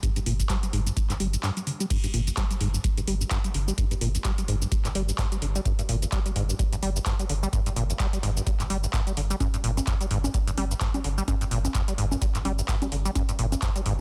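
A dense, heavily limited and fairly dry mix carries this trippy, hypnotic acid house excerpt at 128 BPM in 4/4 with a 57% swing on the sixteenths in G phrygian, where a rubbery, resonant sawtooth acid bass riff with overdrive and digital delay sits up front over a round sine sub bass pumping from the sidechain, while an analog drum machine adds cabasa, congas, crash, handclaps and metallic hi-hats beside a deep electronic kick that drops out from 1.4 to 1.9 seconds.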